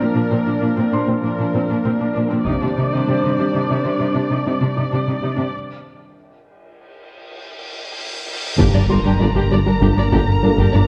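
This excerpt opens on a hollow, flute-like pad with a chorus sheen, bowed viola and cello sections (the cellos up front and expressive), and a very quiet, brilliant grand piano with audible action noise adding texture high above, all moving from Bb to Cmadd9 in a cinematic hybrid orchestral and electronic score in G minor. At 98 BPM in 5/4, the mood is futuristic and relentless, and a taiko ensemble struck with heavy sticks sounds close and dry in the background at 2.5 seconds. The harmony drops away into a break at 5.5 seconds, and a huge, dark cymbal swell builds from 7.4 seconds toward an impact. At 8.6 seconds the full ensemble lands on G minor: lush violins with portamento hold the melody on Bb5 over a distant, smooth second violin line, while a dark French horn section and trombones sustain very quietly. Underneath, a punchy, funky analog bass riff with a filter pluck joins a deep sine sub bass, a roomy tuba, and soft-attack double basses on G1, with the taiko returning. 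The whole piece sits in a moderate scoring stage reverb and carries the worn, warbling pitch drift of old cassette tape.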